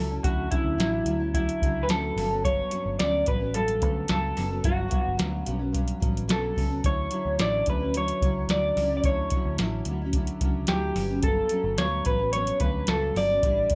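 Indie pop with a bedroom pop tilt, this sunny, nostalgic excerpt moves at 109 BPM in a straight 4/4, cut from a longer piece. An electric guitar through a small old amp carries the melody up front, its dark, slightly broken-up, lo-fi tone picked and lightly touched with chorus. Beneath it, a fingerpicked nylon-string guitar supplies bright, full-bodied accompaniment with audible finger squeak, its analog chorus giving the pitch a warbly drift. A vintage muted picked electric bass adds a round, punchy, foam-muted low end, and a soft vintage rhythm box enters at 0.2 seconds with a deep kick, tonal snare and metallic hats, re-recorded in a small room and placed up front. The harmony sways between Dmaj9 and Gmaj9#11 under light reverb.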